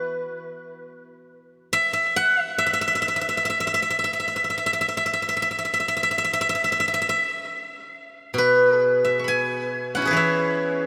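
A solo steel-string zither, played with fingerpicks, rings out bright and silvery from the front of the mix in this brief, flowing and elegant piece of traditional Chinese plucked-string music, moving in a free rubato around 64-72 BPM in the E gong mode, tuned to A4 = 444 Hz. Its lines span B2 to C#6, trailed by a diffuse ambient delay and bathed in a lush hall reverb with a 2.6 s decay that gives the whole sound a dreamy, soaked quality. A new section begins at 8.3 s before the fragment, cut from a longer piece, ends at 10.9 s.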